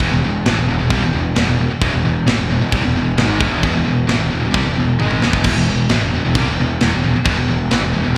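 Heavy and dark, this short heavy metal clip, cut from a longer piece and heard as a live gig through a venue's PA with recital hall reverb, pairs a growly, fuzzed picked bass and a tight, up-front drum kit with a rolled-off top against bright high-gain guitar riffs in the background, one carrying slapback echo and another scooped, while a very quiet double-tracked distorted guitar drops out at 5.4 seconds, just after a drum fill.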